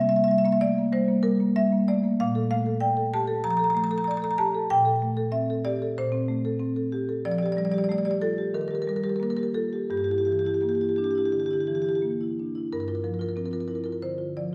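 A solo marimba played with medium mallets carries this reflective, hypnotic contemporary classical piece, its rosewood bars sounding woody and close, ranging from G2 to Bb5 in G dorian. The pulse drifts freely between 83 and 97 BPM in 4/4, moving through chords such as Bbmaj7, F69 and Gm6 before settling on Gm7 at 12.7 seconds. A recital hall's lingering reverb frames the instrument from further back in the room in this short passage cut from a longer work.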